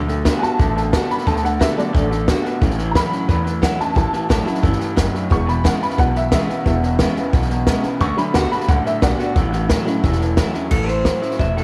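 This upbeat, retro rockabilly passage, cut from a longer piece, opens with a detuned, jangly honky-tonk upright piano taking a boxy, short-sustained solo over a D, A, E, D, A progression until 10.7 s. Beneath it, a bright, twangy electric guitar through a small old amp plays a slightly broken-up riff bathed in spring reverb, while a warm dreadnought acoustic guitar is picked in the background. A woody, thumpy pizzicato upright bass anchors the low end. A compact cocktail drum kit sits up front with a dry, natural sound: a punchy kick, a high-tuned snare, hi-hat and a dark crash cymbal. As the piano stops at 10.7 s, a second electric guitar takes the melody with a lo-fi tone and tape echo, and the mix sits in a light reverb.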